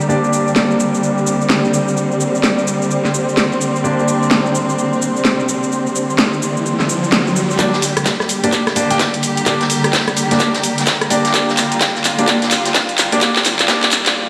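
Aggressive and gritty, this bass house cut at 128 BPM in G minor sets up-front bowed strings with vibrato and a cracking-snare garage kit of handclaps, cabasa, rim clicks and hi-hats over a sidechain-pumped, tape-echoed grand piano stabbing in the background and an ethereal detuned pad, before a riser at 5.4 s leads into a build-up at 7.6 s, where a tight electronic kick and a saturated shaker-and-snare layer join the drum fill and filter sweep inside a lush hall reverb and stone-room ambience.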